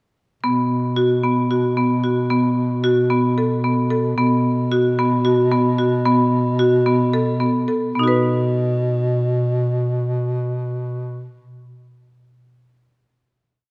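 A moderate concert-hall reverb gives this short contemporary chamber piece a natural sense of space, with both players sitting up front in the sound. Hopeful yet restless, it moves in an uneven 7/8 at 222 eighth-note beats per minute with a straight feel, set in B mixolydian and tuned slightly high to A4 = 441 Hz. A marimba played with hard mallets on rosewood bars carries a percussive, woody arpeggio ostinato between B3 and B4, its tone slightly vintage and band-limited. Beneath it, a mellow bass clarinet holds sustained bass notes on B2 in a jazz-inflected solo voice with vibrato. The tempo begins to slow at 4.2 seconds, easing the piece toward a closing B chord that arrives at 8.0 seconds and rings into the hall until the end.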